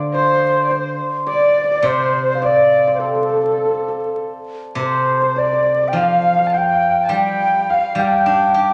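Rubato at 104 BPM in 4/4, this graceful, wistful excerpt of Chinese traditional chamber music in D yu mode places an airy, close-miked bamboo xiao melody with soft attack and vibrato up front, alongside a shimmering hammered dulcimer and a dark, woody bowed erhu with portamento as second lines over a silvery, fingerpicked steel-string zither accompaniment, all set in a wet recital hall reverb with a vinyl crackle.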